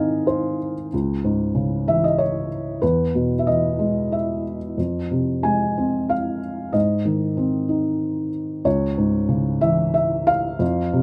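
Closely miked with light reverb, this brooding, cool fragment of a lyrical classical piece features a solo felt-muted upright piano, dark, boxy and intimate with short sustain, playing up front in a rubato 3/4 at 93 BPM, tuned to A4 = 439 Hz, moving through Ab, Dbm, E and Fm across its 11 seconds.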